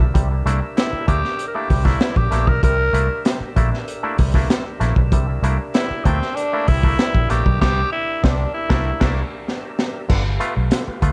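A dark, warm-sounding funk excerpt with an energetic strut, where an up-front crunchy breakbeat kit with a high-tuned snare and a round, foam-muted fingered bass drive beneath overdriven clav stabs through auto-wah and tape echo, a tonewheel organ holds sustained chords through a slow rotary speaker in the background, and a raspy tenor saxophone leads the melody from 0.8 to 9.1 seconds, as a band accent from 7.6 seconds and a closing drum fill carry the music into a G9 chord at 10.1 seconds.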